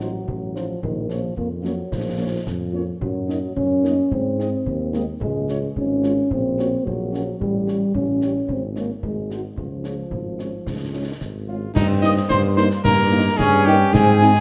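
A solo cornet leads this proud, festive military-style march for wind band in Db major at 110 BPM, over a dark, close-miked euphonium second line, a punchy French horn section in the background, a mellow tuba bass up front and dry concert snare, bass drum and dark clash cymbals. The euphonium drops out at 11.2 s, an airy, hollow small flute group with vibrato enters at 11.5 s, and a bright, tight trombone section adds sustained chords from 11.8 s, all set in the wet reverb of a scoring stage.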